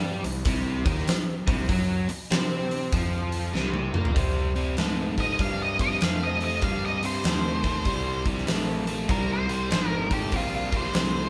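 Blues rock power trio with a southern rock lean, this heavy, smoky cut from a longer piece swings at 97 BPM in C minor, as a biting, double-tracked overdriven guitar riff and a growly, fuzz-drenched picked bass drive beneath a huge arena drum kit with a fat snare and punchy kick, whose fill at 3.5 seconds opens the way for a dark octave-fuzz lead guitar solo with slapback echo from 5.2 seconds, all captured live in a stone room.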